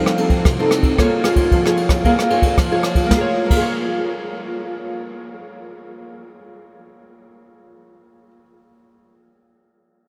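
A dreamy haze of enormous ambient reverb soaks this short cut from a longer samba and choro piece, giving it a nostalgic yet lively character in Bb minor at 113 BPM in a straight 4/4. A fingerpicked nylon-string guitar sits up front throughout, its classical, warm tone touched by analog chorus and small finger squeaks as it moves from F7 to Bbm7. A jazz brush drum kit joins at 0.1 seconds with dark cymbals, a medium-tuned snare, a punchy kick, rim clicks, ride and crash, sounding close and acoustic in a studio room. The drums drop out at 3.7 seconds, leaving the guitar alone to carry the accompaniment until the end at 8.5 seconds. The long, washing tail turns the brief passage into a soft, memory-like glow.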